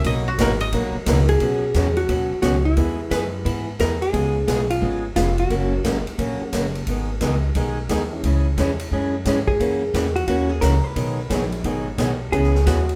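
A swung eighth-note feel in 4/4 drives this playful western swing country excerpt, with a big-band drum kit in a natural, big-room sound: medium-tuned snare, boomy kick, hi-hat and ride cymbal. The upright bass sits up front with a woody, thumpy gut-string pizzicato tone, while a boxy, ladder-braced old acoustic guitar is picked up front as steady accompaniment. A dry koto played with fingerpicks carries the opening moments as a mellow second line and returns briefly at 12.3 seconds. A dark, clean, compressed hollow-body electric guitar picks the melody from 1.3 seconds, pauses, and comes back at 9.5 seconds. Beneath it all, a very quiet, slightly detuned upright piano adds soft accompaniment, and the band shares one room with moderate studio reverb as the chords move from Bmaj7 through E, C#7 and G#m toward C#m7.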